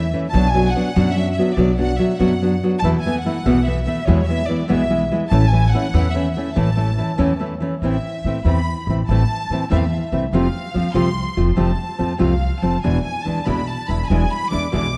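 Up-front fingerpicked nylon-string guitar, full-bodied with audible finger squeak, carries this romantic, festive mariachi excerpt in 6/8 beneath a lush, clear violin section singing the bowed melody with vibrato and a woody, growly pizzicato upright bass, all in a dark production with moderate scoring-stage reverb and a new section arriving at 7.8 seconds.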